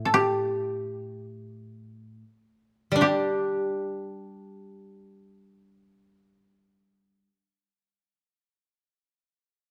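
Austere and solitary, this fragment of Japanese traditional music moves in free time, tuned to A4 = 441 Hz, and slows during its first 3.0 seconds. Two kotos, played with fingerpicks, sit up front: one carries a mellow, woody melody between G4 and A4, while the other supplies a warmer, slightly quieter accompaniment from A2 to G4. Close, detailed microphones capture the dry plucked tone, framed by only a light reverb.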